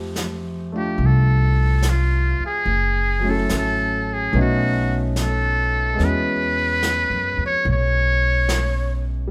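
Lightly reverberant and captured live in one room, this romantic, tender jazz ballad, cut from a longer piece, sets a buzzy, metal-muted trumpet up front with light vibrato and scooped notes from 0.8 seconds, over a clear concert grand piano's accompaniment, a woody, thumpy pizzicato upright bass on gut strings, and a brushed drum kit on snare and hi-hat.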